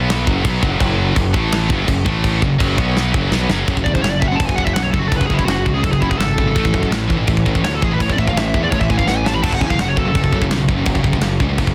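A dense, heavily limited modern mix sits in a small room, with the rhythm section pushed up front in this heavy, relentless heavy metal cut taken from a longer piece. A scooped, double-tracked high-gain guitar drives the riff in a low register, joined by a growly, punchy fuzz bass played with fingers through overdrive. The tight drum kit, mid-forward with bright cymbals, a medium-tuned snare and a tight kick, starts in half time and adds china and crash accents, with a fill from 3.0 to 3.7 seconds. At 3.8 seconds a warm, picked high-gain lead guitar takes a solo over the power chords, sitting slightly behind the rhythm parts. Another short drum fill arrives at 9.1 seconds as the solo pushes on, and the lead drops out at 10.4 seconds while the band keeps hammering to the end.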